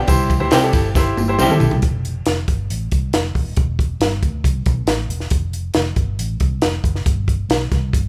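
A straight, danceable groove opens this short cut from an uptempo 1960s-style soul tune, with a compact cocktail drum kit up front: a punchy kick, a high-tuned snare, dark cymbals on hi-hat and ride, and a drum fill from 1.0 to 1.8 seconds. A vintage fingered electric bass runs through the whole passage with a round, foam-muted, dark tone. In the opening moments a clear baby grand piano sits close and intimate, its action noise audible, alongside a jingly tambourine, and at 0.5 seconds a twangy, slightly broken-up electric guitar with tremolo adds brief picked stabs through a small old amp. These three parts drop out by 1.7 seconds, leaving drums and bass to carry the rest over sparse harmony that moves from C through C/E to a closing Gsus4. The band sounds like it is playing live together in one room, with light reverb and a warm, danceable mood.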